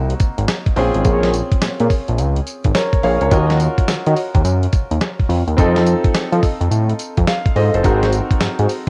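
Punchy and bouncy, this short cut from a longer new jack swing R&B piece moves at 106 BPM in 4/4 with a strong 16th-note swing, set in Bb minor. The sampler-style drum kit sits up front with a gritty, compressed sound, a thumpy kick, a fat snare, hi-hat and tambourine, while a thick, nasal analog bass built from detuned sawtooth and square waves adds saturated, plucky weight underneath. A bright concert grand piano supplies polished, short-sustained accompaniment from the start. Mellow synth brass stabs enter at 1.0 seconds in the background, round and vintage with chorus, vibrato, tape echo and a warbling, wave-folded, filter-swept tone. The chords move from Ab7 to Bbm7, Ebm7 and F7 before returning to Ab7, and the dry home-cassette recording lends the piano, drums and brass a tape-worn character.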